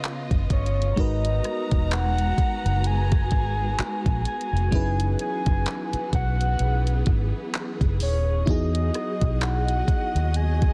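A muted, round electric bass sits up front in this slow, sensual late-night contemporary R&B excerpt, entering at 0.3 seconds with a dark, punchy, foam-muted tone in its low register. The smooth drum kit is equally forward, with a soft kick, hi-hat, handclaps and rim click carrying a gritty vintage 12-bit sampler texture at 64 BPM with a 16th-note swing. An octave-layered synth lead carries the melody, full and mellow with a sub octave, wave-folded edges, vibrato and chorus. Beneath it, an FM electric piano with a soft pad layer adds dreamy, detuned, decaying chords with chorus, while a symphonic string section holds lush, bowed sustained chords with expressive vibrato and a soft attack. The harmony moves through C#9, G#m9, F#13sus4 and Emaj9 in G# minor, set in a dry space with a dense, heavily limited modern master.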